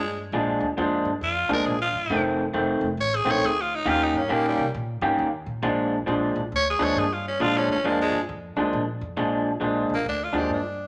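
A growling, raspy tenor saxophone solos up front over a dark, woody pizzicato upright bass in this rollicking, gritty electric blues shuffle cut from a longer piece, joined at 0.3 seconds by a twangy, slightly broken-up guitar riff through a small old amp, all set in a large studio reverb as the chords move through Bb7, F7 and Eb7.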